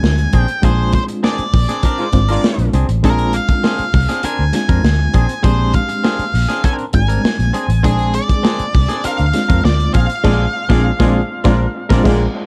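Funk at 100 BPM in a straight 4/4, gritty and strutting, opening on a Bb9 chord in a short cut from a longer piece with a dark, dry production. A fuzzed, distorted lead guitar carries the melody over a round, foam-muted fingered bass sitting up front, a crunchy breakbeat kit with a punchy kick and rolled-off top, a clean, twangy electric guitar in accompaniment, and barky, reedy electric piano stabs colored by overdrive, tremolo and tape echo. A tight, warm horn section adds a brief second line at 2.0 s and returns at 10.2 s, both times during accented band hits.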